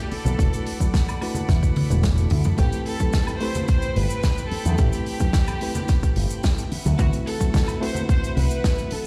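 Nu-disco excerpt at 109 BPM in A dorian, sensual and sleek, where a punchy, tape-warm electronic kick and a picked electric bass with an envelope filter sit up front under an airy acoustic drum kit with cabasa, woodblock and a drum fill from 1.5 to 2.6 seconds, soft-handed congas ringing in the background, a reedy electric piano with fast tremolo, sidechain pumping and digital delay, floating bowed string chords, and an intimate violin section melody with vibrato and delay, all over E7sus4, Am9 and a rootless D13 in a bare room on a big sound system with large studio reverb.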